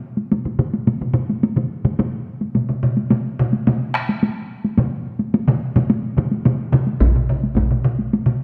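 A straight 4/4 pulse at 108 BPM drives this powerful Japanese traditional taiko excerpt, where a close, dry solo taiko struck with heavy sticks sits up front throughout, one ensemble played with hard sticks in a small room sounds from 0.3 to 6.9 s, a second similarly intimate ensemble joins at 2.5 s, and a third, louder group in a live room bursts in briefly at 7.0 s, the whole piece carried by a lush scoring-stage reverb.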